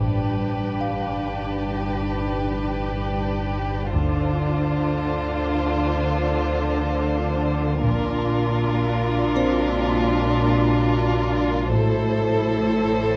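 This cut from a longer suspense film score opens on muted chamber strings and a metallic, inharmonic drone sounding together, setting a mysterious, ominous mood at 77 BPM in 5/4 metre in D minor. The violins carry a veiled, con sordino melody with vibrato and a soft attack, while a second violin line sits further back and the violas hold a close accompaniment beneath them. Cellos and double basses, the latter tucked into the background, anchor the bass with dark bowed tone as the harmony moves from G through Dm7 and Bb to Am. The eerie FM drone rumbles low with a slow attack and long release, thickened by chorus and its own reverb. A delicate music box, bright yet slightly out of tune, tinkles faintly in the background at 0.8 seconds and again at 9.4 seconds. Light reverb and close, detailed miking keep the chamber textures intimate.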